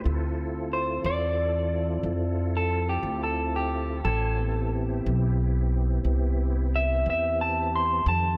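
An electric guitar through a small old amp, slightly broken-up and lo-fi, carries a picked melody up front from 0.7 seconds in this smoky, soulful slow blues excerpt in A minor at 60 BPM in 12/8, over a woody pizzicato upright bass and a clean tonewheel organ holding sustained chords through chorus vibrato and a slow rotary speaker, moving from Dm7 to Am7 in a dreamy mix soaked in lush hall reverb.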